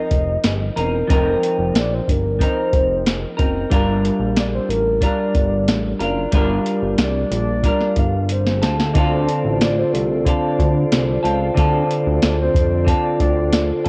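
A soft, octave-layered synth lead and a clean, hollow-bodied semi-hollow electric guitar open this mellow, hazy bedroom-pop passage in G minor, moving at 92 BPM in a straight 4/4. The lead sings a round, dark melody between A4 and F5, colored by phaser, subtle chorus, analog delay and cassette tape, while the picked guitar accompanies with subtle chorus and a vibrato effect. Just after, a glossy, detuned chorused synth bass and a soft vintage rhythm box join up front, the box offering a deep kick, crisp snare and metallic hats re-recorded in a small room. The harmony moves from F7sus4 to Gm7 at 3.7 seconds and on to Dm7 at 8.6 seconds, and as a drum fill winds down a flute-like percussive tonewheel organ enters at 8.9 seconds with chorus vibrato and a stopped rotary speaker. Light reverb and digital ambience frame this home cassette recording, cut from a longer piece.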